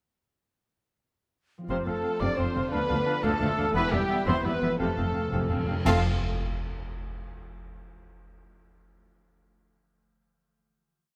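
Lush violins carry the soaring, heroic melody of this short adventurous film-score cue in 6/8 at 115 BPM in F lydian, doubled at the octave by an airy flute and in sixths by mellow French horns, while dark trumpets add stabs, a bright clarinet and a roomy oboe hold repeated notes, softer violins and portamento violas sustain chords beneath, woody cellos and double basses drive the bass ostinato, a ringing harp rolls chords from 1.6 seconds, and cymbal swells, crashes and bass drum strokes enter at 3.8 seconds before a hard-mallet timpani fill at 4.8 seconds leads into the final chord.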